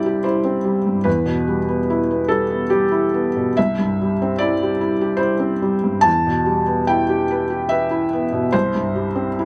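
A soft, intimate felt-muted upright piano sits up front in light reverb, its thin felt giving the tone a mellow, vintage hush. This hopeful, tender neoclassical minimalist piece, cut from a longer work, moves in a rubato three-beat metre with uneven beats. The solo piano spans a range from low bass up into its upper register, drifting between C and E minor chords before settling on an open C at 8.5 seconds.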